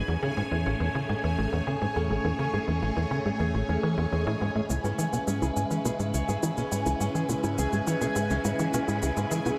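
A steady, straight 4/4 pulse at 104 BPM is driven by a tight, punchy sequencer bass riff sitting up front, its sawtooth and square-wave tone given a filter pluck, ring modulation, analog chorus and delay. This ambient, sequencer-driven space music in C# minor feels expansive and cosmic, moving from Amaj7 to C#m7 at 4.7 seconds. A phased string machine holds swirling, warbling sustained chords with a soft attack and long release, coloured by ensemble chorus and a phaser. A fingerpicked concert harp rings with delayed arpeggios in the background, while a bubbling, resonant stepped-filter texture hovers on a single high G#5 with chorus and its own reverb. Electronic shaker and bongos, re-recorded in a small room and treated with delay, join at 4.7 seconds, and the whole echo-heavy mix sits in a wet spring reverb, cut from a longer piece.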